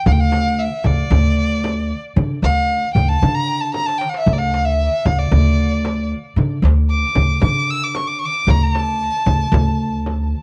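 Passionate and stately, this short excerpt of an Arabic maqam ensemble piece in D maqam suznak moves at 114 BPM in a straight 4/4, led by a clear, smooth bowed violin with vibrato and analog delay singing up front from D5 to E6 over a woody, growly pizzicato upright bass, a crisp, saturated metal-shell darbuka set in the background, and a small, bright, close and dry frame drum, with a drum fill arriving at 3.7 seconds, all captured with light reverb on a home cassette recording.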